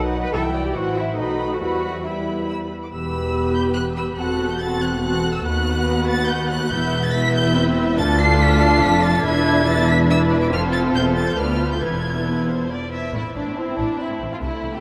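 Set in a quick, straight 3/4 at 142 BPM, this urgent, dramatic movement for string orchestra sits in E minor before moving to A minor from 8.0 s, cut from a longer classical-period piece. A symphonic violin section carries the melody high above, lush and veiled, with a soft attack, while a studio violin section supplies a second line beneath it. Violas fill the accompaniment with a smooth top, and the bass is shared by a close double bass section and a distant cello section that sits in the background with only light vibrato. Every section plays muted, con sordino, giving the ensemble a dark, shadowed colour, and the harmony passes through diminished and dominant chords such as F#m7b5/A, B7 and E7 before settling on Am at 13.1 s. A huge, wet reverb places the strings in a vast, echoing space, with a long tail that blurs their edges.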